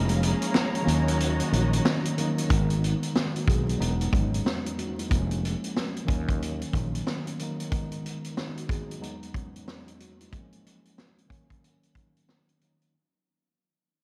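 A vintage drum kit sits up front in this reflective, gritty boom-bap hip-hop excerpt at 92 BPM, its punchy kick and high-tuned snare carrying a swung 16th-note feel, while a growly, bright fretless bass holds the low end until 7.0 seconds and a barely audible finger snap flickers briefly near the start. A mellow tine electric piano with a cassette-tape tint plays chords throughout over a G#m, Emaj7, A#m7/E# and D#m7 progression, and a veiled, con sordino string section adds lush, bowed sustained chords with vibrato only until 2.5 seconds. The dreamy mix is soaked in a long cathedral reverb with vinyl crackle, and it fades out from 2.5 seconds to the end.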